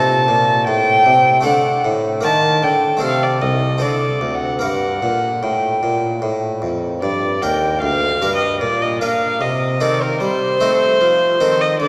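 Grave and flowing, this short excerpt from a baroque-style classical sonata movement in G minor moves at 75 BPM in 3/4, tuned to A4 = 436 Hz. A dark, nasal violin with a reedy gut-string tone carries the melody up front in period style, while a bright, plucked Italian-style harpsichord supplies accompaniment and a solo bassoon with light vibrato and a soft attack holds the bass line. The whole ensemble sits in the long, wet reverb of a cathedral-like space, with the harmony passing through diminished and minor chords before a shift in the second section near 7.0 seconds.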